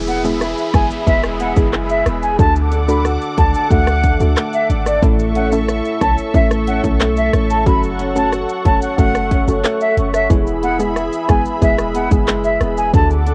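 A punchy, up-front pop drum kit of layered electronic kick, bright hi-hats, handclaps, rim click and shaker drives this tough, hypnotic dancehall cut from a longer piece, set at 91 BPM in a straight 4/4 over a cycle of E, D, A and F#m. A deep, boomy 808-style sine bass anchors the low end, while a fingerpicked flamenco guitar with audible finger squeak plays arpeggios through analog delay, and a soft, round synth pluck adds dark, gentle accompaniment. Above them, a mellow, airy concert flute carries a distant, unsteady melody with a crisp chiff, a lush, detuned unison pad holds bright sustained chords with phaser and sidechain pumping, and an electronic downlifter sweeps through the first 5.0 seconds, all given the light reverb and tape grain of a home cassette recording.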